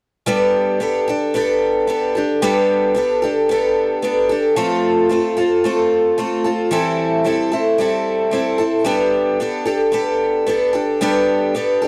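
Warm and nostalgic, this short rock excerpt is carried entirely by a lone picked twelve-string acoustic guitar at 112 BPM in straight 4/4. The guitar sits up front with a bright, shimmering, octave-doubled tone from fresh strings, and a touch of finger squeak adds a human edge. It moves through a G mixolydian progression of Gadd9, F and C6/E before settling back on Gadd9 at 8.9 seconds, staying between E3 and A4. Light reverb rounds out the guitar within a dry, close 1970s-style studio sound. Tuned slightly high at A4 = 443 Hz, the fragment runs from 0.3 to 11.9 seconds, cut from a longer piece.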